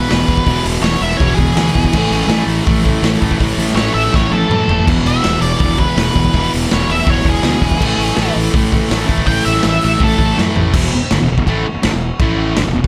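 Two fuzz guitars open this raw, swaggering garage rock excerpt together at 0.0 seconds: a dark, octave-fuzz lead carries the melody up high while a bright, double-tracked, compressed rhythm guitar churns out a low riff up front. Fuzz-soaked fingered electric bass and a raw garage drum kit join almost at once, driving a straight 4/4 at 164 BPM in E mixolydian, with chords moving between E and A. The bass is growly and punchy with an overdriven edge, and the drums sound saturated and gritty in a small, pumping room, with a boomy kick, a medium-tuned snare, a rolled-off top and crash, hi-hat and toms in the mix. Drum fills mark the turns, first around 4.1 seconds. The lead guitar drops out at 10.4 seconds, and a short closing section leaves the riff guitar, bass and drums pounding on under a light reverb until the excerpt cuts off.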